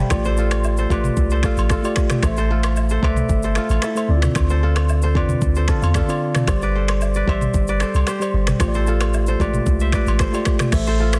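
A deep, boomy 808-style bass sits up front in this sultry, smooth afrobeats excerpt at 113 BPM, joined by a mellow, clean tine electric piano that plays a short fill between 5.4 and 6.5 seconds, a ringing, crisp fingerpicked kora riff with digital delay, an electronic afro-pop drum kit with a deep kick, snaps, rim clicks, shaker, toms and crash, and close, dry agogo bells and woodblock in the background, all moving through chords from F6/A through Am, Dm7 and Gsus4 under a light reverb and a dense, heavily limited modern master.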